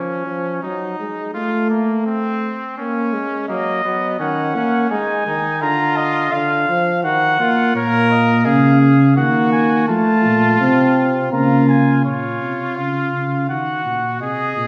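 In a straight three-beat metre, this serious, contemplative passage from an imitative classical brass canzona opens with a bright, punchy trumpet on the second line over an up-front euphonium accompaniment with a smooth top and light vibrato, joined at 3.5 s by a warm cornet carrying the melody and at 7.8 s by a mellow, up-front tuba with vibrato on the bass, the euphonium dropping out at 12.0 s, within the reverberant ambience of a recital hall.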